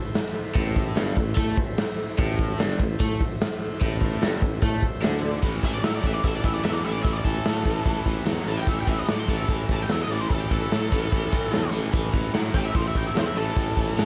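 Heavy and smoky, this blues rock and southern rock excerpt opens with a gritty, overdriven tonewheel organ holding sustained chords in the background through a slow rotary speaker. Alongside it, a raw garage drum kit with a punchy kick and medium-tuned snare sits up front, joined by a double-tracked, compressed overdriven electric guitar riff and a mellow tuba carrying the bass with vibrato. The organ drops out at 5.4 seconds, and from 5.6 seconds a dark octave-fuzz lead guitar takes a picked solo shaped by wah and distortion, all set in light reverb.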